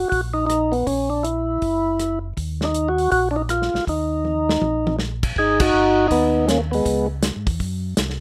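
Soul jazz organ trio excerpt in Eb minor at 160 BPM with a swung, smoky and bluesy feel: a full, percussive tonewheel organ carries the melody up front with key click and slow rotary speaker until 7.1 seconds, a round, dark organ bass line turns underneath through the same slow rotary, and a dry acoustic soul kit with dark cymbals, a tight kick and a medium-tuned snare plays a drum fill at 4.2 seconds before the whole band hits an accent at 5.6 seconds, all in a rough home demo mix with moderate studio reverb as the chords move from Gb through G#m7 and C#m.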